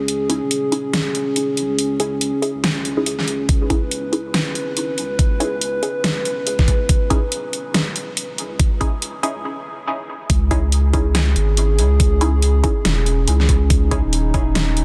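Brooding and meditative, this excerpt from a longer deep dubstep piece moves with a swung, half-time feel. A dark, nasal analog pad holds sustained chords throughout, its slow attack and long release softened by chorus, while a thick, saturated sine sub bass sits underneath with a fast attack and long sustain. Muted, detuned chord stabs with a short, plucky decay drift through a phaser and dub echo, a filter sweep running across them during the build-up until a brief break at 9.4 seconds. The dubstep kit brings a huge snare and bright hats, overdriven and up front, and an overdriven, knocking electronic kick joins at 3.5 seconds. At 10.3 seconds the drop lands, and the whole sits in light reverb under a dense, heavily limited modern master.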